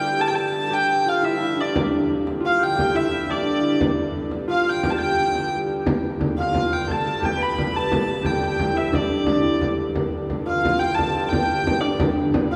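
A nasal, reedy hurdy-gurdy carries the melody up front in this festive, ancient-sounding medieval dance in G mixolydian, joined from the start by a ringing, fingerpicked concert harp on a second line and a dark, woody hurdy-gurdy drone in the background. At 1.8 s a deep frame drum played with soft hands enters up front, settling into a straight 6/8 lilt at 117 BPM before the tune moves into a new section at 5.9 s. The whole ensemble sits in a wet, lingering church reverb, and the recording is cut from a longer piece.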